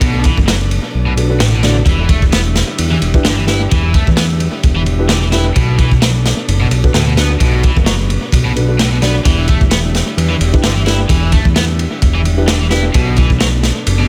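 A dry, echo-heavy mix with little reverb frames this energetic, gritty breakbeat excerpt, built on a swung groove over Bm7 and Em7 chords. Up front, a saturated, dark-cymbaled breakbeat kit of tight kick, snare and ride carries analog delay, while a fat, nasal, detuned analog bass holds the low end beneath a bright, double-tracked overdriven guitar riff roughened by 12-bit sampler grit, low-pass filtering and delay. A smooth tonewheel organ sits in the background with slow rotary vibrato and sidechain pumping, and a boxy, mellow grand piano adds delayed, lo-fi stabs from 1.2 to 12.9 seconds.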